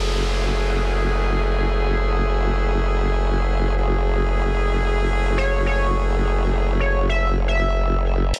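Playful, funky glitch hop in free time and F# minor, cut from a longer piece, where a wobbling, formant-swept sawtooth bass sits up front under clear, loosely played horn stabs with light vibrato and tape echo over an F#m9 chord, electronic downlifter and riser effects sweep through until 3.8 seconds, an edgy, tearing sync lead with vibrato enters at 5.4 seconds, and a gritty, pitched-down hi-hat ticks very quietly at the close, all in a dense, heavily limited mix with light reverb.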